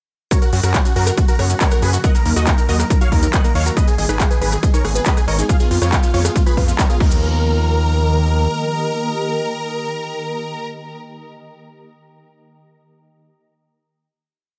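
A dry, up-front mix carries this soaring, driving uplifting trance drop, where an overdriven four-on-the-floor electronic kick and a programmed techno kit of hats, claps, rim clicks and crash, with grainy maracas in the background, push a gritty, saturated off-beat synth bass, a punchy pluck arpeggio on a 6-step loop drifting against the bar, a shimmering, ethereal pad and a huge, euphoric supersaw lead riffing in thirds and sixths over a pedal note, with the bass, pluck, pad and lead all pumping to the sidechain, until the drums, maracas and pluck fall away by 7.4 s and the lead and pad ring on into a final hit that ends at 10.7 s, the bass holding beneath them until 8.5 s.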